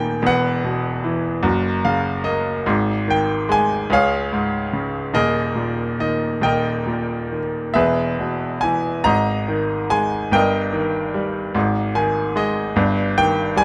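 Flowing in a lilting 6/8 with a free, rubato pulse, this short classical passage for lyrical solo piano carries a dark, wistful mood and is taken from a longer piece. A bright grand piano plays throughout, spanning from D#1 up to A#5, its brilliant, polished tone placed up front with a short sustain. The harmony drifts from Esus2 through F#, C# and a suspended D# before settling on E, G#5 and a closing D#/G, giving the line a searching, melancholy colour. Brief piano fills appear at 1.4 seconds and again at 11.6 seconds. Close, detailed microphones capture the instrument in a light reverb, keeping the sound intimate and present.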